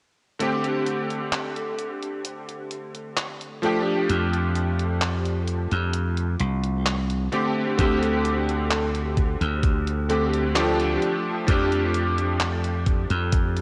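Melancholic and woozy, this vaporwave excerpt moves at a slow 65 BPM in a straight 4/4, cut from a longer piece. A bright electric grand piano carries the accompaniment from the start, its cutting, clangy, vintage tone sitting up front and colored by ensemble chorus and analog delay as it moves between D7sus4 and F69. Beneath it, a detuned 8-bit digital drum machine supplies handclaps and hi-hat with a sampler-style, tape-warm character, as if re-recorded in a small room. A punchy, amped slap bass enters at 4.1 seconds, sitting low and up front, and at 7.8 seconds a thumpy electronic kick drum arrives to mark the second section. The whole is bathed in a moderate concert hall reverb and carries the hazy grain of cassette tape.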